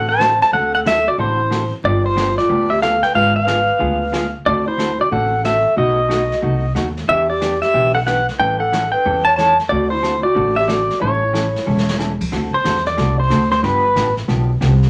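Vinyl crackle and a wet studio ambience frame this playful, down-home western swing clip, where a bright, twangy pedal steel guitar carries the melody up front with slide and volume swells while a breathy, whispered clarinet weaves a second line until 12.0 seconds. Beneath them, a dark hollow-body jazz guitar supplies clean, picked accompaniment, a woody, thumpy upright bass holds the bottom, and a distant, roomy brush kit with dark cymbals keeps the swung beat. After a short drum fill, the pedal steel takes a solo from 12.3 seconds over chords such as D9 and G9.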